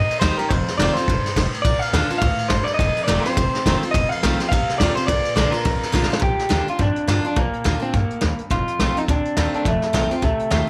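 Retro and rowdy, this short rockabilly excerpt in Bb major swings lightly at 210 BPM, with a twangy, slightly broken-up electric guitar through a small old amp carrying the melody up front, its tape echo trailing each picked line. A bright, full-bodied dreadnought acoustic guitar picks out the Eb, F7 and Bb changes beneath, while a woody, thumpy upright bass with gut strings anchors the low end. A vintage brush kit with dark cymbals and a punchy kick sits in a roomy, distant space, and a drum fill at 5.9 seconds leads into the second section at 6.2 seconds.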